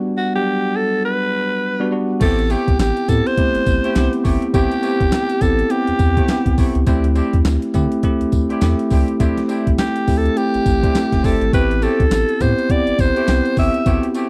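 A raspy, gritty alto saxophone carries the melody from 0.2 seconds in this bouncy, punchy new jack swing R&B excerpt, its bright pop-style vibrato sitting up front with a slapback echo. For the opening break it shares the space only with a bell-like tine electric piano, whose clean chords sound as if through the instrument's built-in speakers. At 2.2 seconds the groove kicks in with a swung sixteenth-note feel. A gritty, pitched-down boom bap sampler-style kit brings a thumpy kick, medium-tuned snare, hi-hat, handclaps, tambourine and crash cymbal, all compressed and tape-warm. A round, deep analog bass with a nasal, dark filter pluck anchors the low end, while a tight, vintage jazz-style horn section adds light-vibrato stabs further back in the mix. The harmony moves from Am7 to D9sus4 and back, and the whole thing has the dry, close feel of a 1970s-style studio touched with digital ambience.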